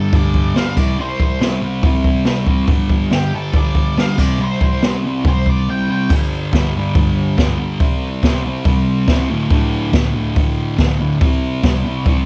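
A raw, rowdy garage rock cut from a longer piece, recorded at home on cassette with light reverb, driving along at 141 BPM in straight 4/4 over chords moving between G5, C5 and D5. Up front, a thick, double-tracked fuzz guitar picks the riff throughout, while a dark octave-fuzz lead guitar, colored by tape echo, carries the melody until it drops out at 6.1 seconds after a brief break. A jazz kit played with brushes sounds distant and roomy, with a boomy kick, dark cymbals and a rolled-off top end.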